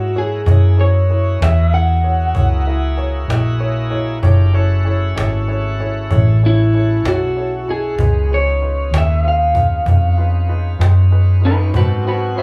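Lightly reverberant and played live in one room, this rollicking, swaggering slow blues in 12/8 puts a slightly broken-up electric guitar solo up front over a round, foam-muted fingered bass and a woody cajon with faint snares, while a polished baby grand piano slips in a fill at 3.3 seconds, a bright, shouting tonewheel organ holds lightly overdriven chords through a slow rotary speaker, and a close-miked saxophone section joins in the background at 11.7 seconds.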